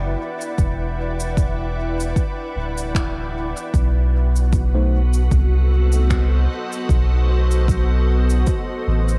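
Hazy and deep, this short ambient dub excerpt drifts along at 76 BPM in 4/4 with a light sixteenth-note swing, set in E minor and moving from Em9 to B7b9 at 3.7 seconds. A soft, organ-like pad holds sustained chords throughout, its pure, detuned tone blooming slowly under ensemble chorus, built-in reverb and a cassette-tape haze, bright yet calm as it evolves. Underneath, a round, soft dub sub bass sits up front with a fast attack and sustained notes. An overdriven electronic kick drum enters at 0.6 seconds with a layered, produced thump, while cabasa and finger snaps arrive at 0.4 seconds, sounding acoustic and roomy behind a dub echo and cassette coloring. Between 4.7 and 5.0 seconds, a very quiet tine electric piano slips in with brief stabs, its worn, slightly out-of-tune character heard clean and direct. The whole piece has the intimate feel of a home cassette recording with little reverb on the room itself.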